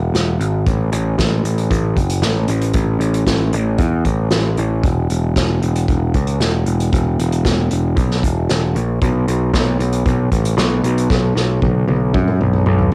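A bright, growly overdriven electric bass, picked and up front, opens this upbeat yet wistful indie rock excerpt in E major at 115 BPM, moving between E1 and F#2. An acoustic drum kit played with bundle sticks joins at 0.1 s, its roomy, distant character set against a tight kick, medium-tuned snare, hi-hat and toms, all carrying a cassette tape color. The home-recorded cassette sound stays dry, and a drum fill arrives at 11.1 s and runs to the cut at 12.9 s.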